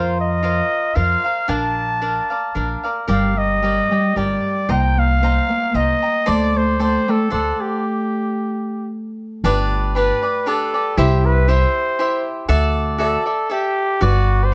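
A swung 3/4 lilt at 114 BPM drives this dramatic, passionate mariachi excerpt, which moves from G minor into G major at 9.4 s after a stop at 7.8 s. A raspy, growling trumpet with light vibrato carries the solo melody up front in plate reverb, over a crisp, mellow picked cavaquinho and a thumpy, woody pizzicato upright bass that also sits forward. From 3.1 s a fingerpicked Celtic harp adds ringing arpeggios with a slapback echo, all within a dark studio sound with moderate reverb.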